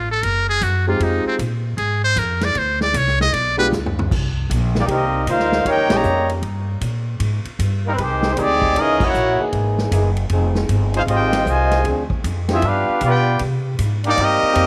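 In a lightly reverberant small room, this sultry big band swing cut opens with a buzzy, thin metal-muted trumpet solo over woody pizzicato upright bass, acoustic drums with a punchy kick and an intimate grand piano with audible action noise, then at 4.8 s a clear trumpet section with vibrato takes over the melody, backed by a veiled cup-muted trombone section in the background and sustained chords from a mellow trombone section, with band accents at 5.8 and 8.9 s.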